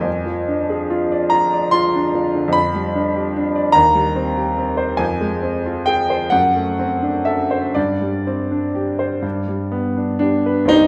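A clear, up-front grand piano opens this tender, dreamy romantic nocturne, spanning a register from low bass to bright treble in 6/8 with free rubato. Its smooth, vintage tone and long sustain bloom inside a wet recital-hall reverb, while the harmony drifts from a diminished chord through minor and dominant colours to a suspended chord that settles onto G at 9.2 seconds. The solo piano plays alone from 0.0 to 10.9 seconds, an excerpt cut from a longer piece.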